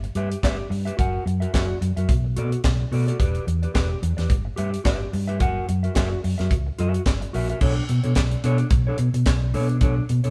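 Disco with a driving, sultry mood and a lightly swung sixteenth-note feel, cut from a longer piece. A tight funk drum kit sits up front, its dry, acoustic sound built on a tight kick, a high-tuned snare, handclaps, hi-hat and bright crash cymbal. The hollow-body short-scale electric bass, played with the fingers, also sits up front and gives a dark, round, amped tone down low. Beneath them a mellow electric guitar plays fingered, clean accompaniment, its shadowy timbre mixed lower than the rhythm section. The chords move from G6 and F#7 through Bm7 and Em7 before settling on Bm9 around 7.6 seconds, and the band plays live together in a stone room with moderate reverb.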